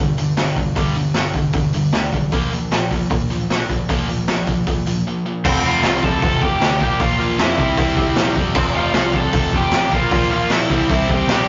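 A sludgy distorted guitar and a brighter, tighter distorted guitar open this rebellious, energetic punk rock fragment on a riff, with a growly picked bass set back in the mix, and a raw garage drum kit with a high-tuned snare and boomy kick kicks in up front at 0.2 seconds. After a short break at 5.1 seconds, a faint double-tracked overdriven guitar joins the riff, and a lead guitar through a small cranked amp takes up a melody with delay. The whole thing has the gritty, saturated sound of a rough rehearsal-room recording, its top end rolled off and lightly touched by reverb.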